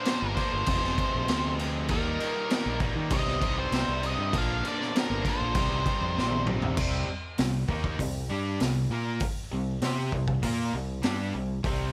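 A dry excerpt of swaggering, gritty classic rock in C minor, moving at 98 BPM in a straight 4/4. The raw garage drum kit sits up front with a small-room character, pairing a high-tuned snare and boomy kick with crash, hi-hat and toms, its saturated tone carrying a rolled-off top. Beside it, a growling fingered electric bass, direct and amped with overdrive, pushes forward as the low anchor. Behind them, a cranked stack guitar and two distorted electric guitars, one compressed and one double-tracked, play bright, picked riffs over a Bb, Fm, Eb, Cm, Bb, Cm progression. An octave-fuzz lead guitar carries the melody with a warm, fuzzy edge and slapback echo until 6.5 seconds. A drum fill starting at 6.2 seconds leads into a new section at 6.8 seconds, where the riffing guitars, bass and drums carry on together.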